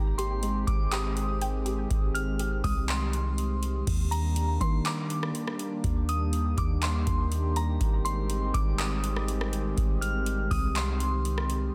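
A half-time 4/4 groove at 122 BPM from a booming analog drum machine, its deep kick, metallic hi-hats, handclaps, rim clicks and crash sitting up front in a large room, anchors this blissful, floating cloud-rap hip hop piece, where a soft, round 808-style bass rumbles beneath a warbly, nostalgic tape-like pad with chorus, reverb and sidechain pumping, a glassy FM synth bell carries the melody through chorus, tremolo and tape echo, and a gentle pluck arpeggiates in the background until 3.9 s as the chords move from Abmaj7 to Ebmaj7 and back.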